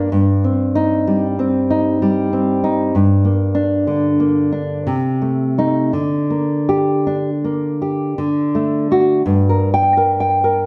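Set in a rubato 3/4 at roughly 53-65 BPM, this brief excerpt from a longer romantic piece for solo classical guitar unfolds in G minor with a melancholic, passionate mood. The nylon-string guitar sits up front, its dark, thumb-plucked tone ranging from G2 to G5 and carrying a slapback echo, moving from Cm/G through Gm and Adim/C to a D chord before settling back on Gm at 9.2 seconds. Close, detailed microphones capture the instrument within a moderate recital hall reverb of about 1.5 seconds.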